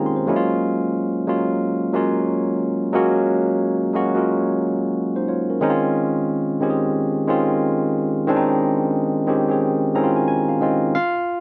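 A solo tine electric piano opens with a fill, its bright, barky, clean tone coming through a combo amp and sitting up front in a dry, roomless sound. This sensual, soulful R&B excerpt has a swung sixteenth-note feel, moving from Gbmaj9 to Dbmaj9 across a range from Eb3 to C6. The piano closes with another fill from 9.6 to 10.9 seconds before the cut at 11.4 seconds.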